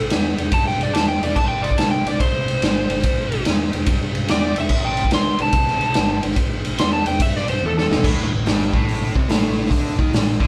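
Blues rock in a power-trio, southern rock vein, this smoky, gritty excerpt at 144 BPM in A minor swings its eighths as a dark, overdriven slide guitar solos over a warm fuzz bass and an up-front garage drum kit with a punchy kick, a medium-tuned snare and a rolled-off top, until a drum fill from 7.6 seconds leads to 8.0 seconds, where a distorted, double-tracked guitar riff enters, with the band playing live together in one room with moderate studio reverb.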